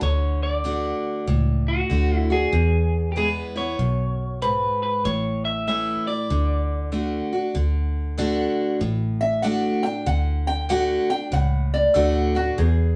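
A twangy, slightly broken-up electric guitar carries the melody over a bright picked steel-string acoustic guitar and a dark, round, foam-muted bass in this easygoing, nostalgic stretch of honky-tonk classic country, swinging at 96 BPM in D major through D, E and A chords. The electric guitar drops out at 6.9 seconds, and at 9.2 seconds a metallic, nasal lap resonator guitar, fingerpicked with a steel bar slide, enters with a solo line. The band sounds live in one room under moderate studio reverb, with every part up front.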